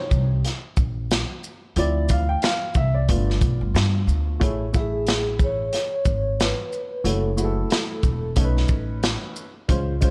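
This is a cool, warm jazz-hop excerpt at 91 BPM in 4/4, with a swung sixteenth-note feel in A major. A dark, woody upright piano carries the accompaniment throughout, slightly detuned and vintage in tone, and it takes a solo in the opening seconds over rich seventh and ninth chords. Underneath, a thumpy pizzicato upright bass with gut strings sits up front alongside a crunchy breakbeat kit of kick, snare, hi-hat and shaker, whose saturated, gritty sound has a tight kick and a rolled-off top. From 4.8 to 8.3 seconds a soft-mallet vibraphone adds a brief melody, metallic and ringing with a medium motor vibrato, close-miked and touched with analog delay. The studio ambience gives the whole mix a dark, warm production.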